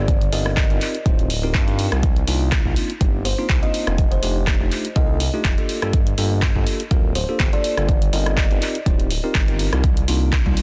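A deep, layered electronic kick drives this late-night deep house cut at 123 BPM in C dorian with a lightly swung sixteenth feel, joined by a smooth, nasal synth bass with vibrato and a drum kit of handclaps, hi-hat and rim click, the kick and kit both re-recorded in a small room. A bright, bell-like tine electric piano plays stabs with sidechain pumping and digital delay over chords such as Cm11, F13 and Gm9, while a woody, hollow kalimba carries a soft melody with tape echo in the background until 8.8 s. Thick-skinned, saturated congas enter only at 10.5 s at the very end, and the mix is dry, dense and heavily limited.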